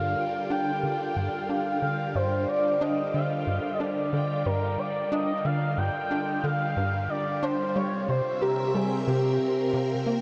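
An expressive synth lead sits up front, singing a smooth, dark melody between G4 and G5 with vibrato, lush chorus and delay, in this mysterious, expansive stretch of sequencer-driven ambient space music cut from a longer piece. Beneath it, a tight sequencer bass drives a punchy, filter-plucked riff at 91 BPM in a straight 4/4, its fast attack decaying into a mellow tone colored by ensemble chorus and delay. A phased string machine holds swirling, vintage chords that warble and glow brightly through ensemble chorus and phaser. In the background, a bubbling stepped-filter texture adds detuned, resonant bubbles with random filter steps and its own built-in reverb, and all four parts share a sawtooth core. The harmony rests on Gm7 in G minor before moving to C7 at 7.8 seconds, with the whole mix bathed in a huge, wet ambient reverb with an 8.7-second tail.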